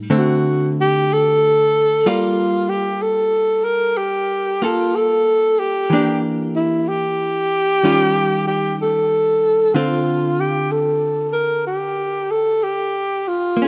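Bathed in a moderate plate reverb, this melancholic, wistful jazz ballad fragment in G minor moves at 62 BPM with a swung feel, as a breathy, whispered alto saxophone with subtone, vibrato and scooped notes carries the intimate, close-miked melody up front over a dark, clean, compressed hollow-body archtop guitar picking through chords such as Gm9, Em7b5 and Eb9.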